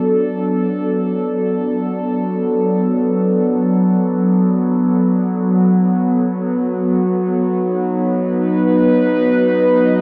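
In free time, this weightless ambient excerpt floats on a single warbly, tape-like pad, detuned, nostalgic and lo-fi with a sawtooth-and-triangle mellowness, sitting up front with slow attacks, long sustains and releases, colored by chorus, phaser and tape echo, and drifting from a D6 chord to B at 5.3 seconds inside a huge, wet reverb with an 8.7-second decay.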